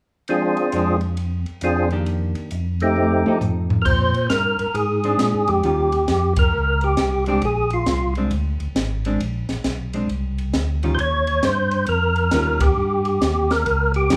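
Greasy and bluesy, this soul jazz organ trio swings at 135 BPM in Bb mixolydian. A percussive tonewheel organ carries the melody with light overdrive, chorus vibrato, key click and a slow rotary speaker, pausing at 8.1 s before returning, while a second tonewheel organ lays down a fat, clean bass line from 0.7 s. A dark, picked hollow-body jazz guitar comps underneath, and a compact cocktail drum kit with a high-tuned snare and punchy kick plays a fill from 3.0 s, with band accents punctuating the groove over Fm6, Bb7, Bb9 and Eb9 chords in a live-room reverb.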